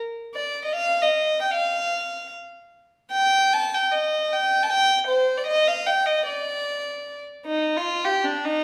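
In triple metre with a straight feel, this festive, proud Mexican folk fragment features a single bowed violin, rich and pure with a soft attack and a floating, distant quality yet placed up front, playing alone from 0.3 to 8.6 seconds in a moderate recital-hall reverb and shifting to a new section at 7.4 seconds.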